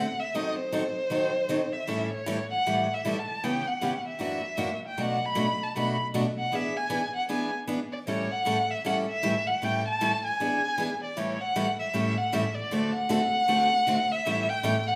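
Jazz in A mixolydian at a swinging 155 BPM, playful and charming, with a single bowed violin carrying the melody up front in a warm, expressive voice full of vibrato, soft attacks and sliding portamento. A picked steel-string acoustic guitar accompanies just as close, bright and concert-toned with audible finger squeaks, moving through changes such as D#dim7, C#m7b5, F#aug7 and Bm7 before settling on A7 and D7. The duo plays live together in a large studio room whose lush reverb hangs for 1.3 seconds, and the passage is cut from a longer piece, both parts stopping near 15 seconds.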